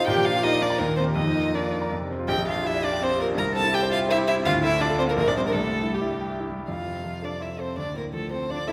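A clear, up-front grand piano with audible action noise carries the accompaniment beneath a rich solo violin melody played sul tasto with light vibrato and an airy bow, while a warm cello sings a soft-attacked second line, all three heard together throughout this graceful, cheerful excerpt from a quick classical-period movement in triple time, its intimate, close sound set in a wet scoring-stage reverb as the music moves from its opening section into a new one at 6.7 seconds.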